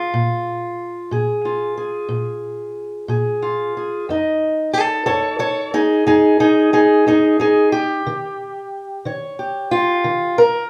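A fingerpicked steel-string parlour guitar, dark and up front, carries this rollicking, laid-back acoustic country blues alone in a straight 12/8, moving from Bb5 to F7 at 4.1 seconds and Eb7 at 8.1 seconds, with light reverb giving the short cut from a longer piece the feel of a live room.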